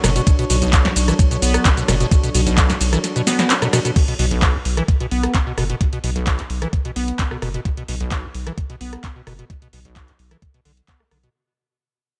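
Acid house at 130 BPM in B minor with a raw, gritty mood, this excerpt opens on a drop where a lush, detuned sawtooth unison pad with chorus holds a Bm7 chord until 3.9 seconds, alongside a squelchy, resonant square-wave acid bass riff with filter sweep, cassette-tape grit and delay, and a deep, tube-saturated sine sub bass, both pumping under sidechain, while a thumpy, up-front electronic kick enters at 0.3 seconds and an analog drum machine adds punchy snare, handclaps, metallic hats, shaker, rim click, ride and crash in a light reverb, before the harmony drops out at 4.0 seconds and the groove fades away.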